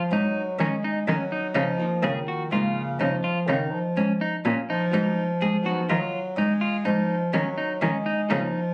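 A distant, roomy bass clarinet carries the melody from the start of this tense, brooding progressive instrumental in 7/4. It sits beside a bright, twangy, picked electric guitar playing arpeggios and a bowed cello holding the bass with a soft, floating sul tasto tone. At 1.8 seconds a dark, double-tracked hollow-body jazz guitar enters in the background with fingered accompaniment as the harmony moves between G#5 and C#add9, all caught on a phone in a room with light club reverb.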